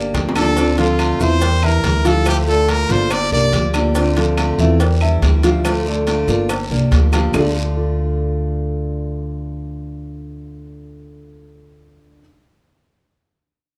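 A picked, bright steel-string acoustic guitar, a dark, boxy baby grand playing arpeggios through analog delay, and a thumpy, gut-strung upright bass standing up front open this danceable, nostalgic Cuban son and guajira groove in D minor, cut from a longer piece with a rough home-demo feel and small-room ambience. A brilliant, forceful trumpet sings a scooped, vibrato-laden solo line from 0.4 to 3.7 seconds. Behind it sit low-tuned, saturated cowbell and bongos, ringing timbales and agogo bells, woody claves, a raspy guiro and grainy maracas, all falling away at 7.4 seconds while the guitar, piano and bass carry on.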